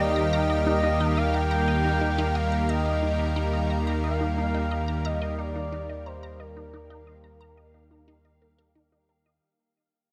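Cosmic and hypnotic, this ambient, sequencer-driven space music moves at 89 BPM in a straight 4/4, centred on Eb and fading out across its full 9.4 seconds as a fragment of a longer piece. A lush, thick unison pad sits up front, holding sustained chords with a slow attack, long release and chorus, while a deep, round sine sub bass anchors everything on a low Eb. Over this, an expressive synth lead carries a smooth, mellow melody with vibrato, subtle chorus and analog delay, stopping at 8.8 seconds just before the other parts. In the background, a resonant blip pluck plays a juicy, squelchy riff with a short decay, colored by phaser and analog delay. A very quiet bubbling texture with random filter steps and built-in reverb hovers high on a single F5, and a moderate plate reverb gives the whole a spacious, floating glow.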